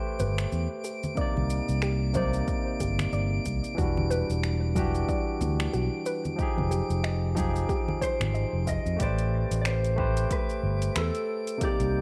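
A barky tine electric piano with tape echo, soft, round plucked arpeggios in the background and a glassy, drifting high texture with chorus and built-in reverb open this wistful sunset chillout cut at 92 BPM in A minor, while a dark, punchy fingered bass sits up front. A deep house drum kit of finger snaps, metallic hi-hats and shaker, with an overdriven electronic kick arriving at 1.2 seconds and dry, bright congas in the background, gives a gently swung 16th-note groove over minor-ninth chords. At 8.0 seconds a mellow, compressed electric guitar takes the melody with lush chorus, and the whole piece carries the warbly pitch drift of worn cassette tape under light reverb.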